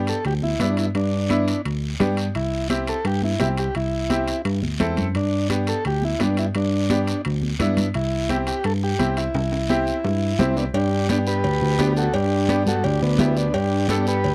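Danceable and festive, this cumbia excerpt moves at 172 BPM in G major, with a mellow, vintage overdriven combo organ carrying the melody up front with light vibrato, a worn, slightly out-of-tune tine electric piano holding down the bass through a lightly overdriven combo amp, and a bright, woody upright piano with audible action noise accompanying over G and C chords. Raspy guiro, ringing metal-shell timbales and cowbell, and damped, high-tuned congas entering at 0.4 seconds in the background fill out the percussion, all in a dry, close 1970s-style studio sound, with a drum fill from 9.3 to 10.7 seconds leading into a new section.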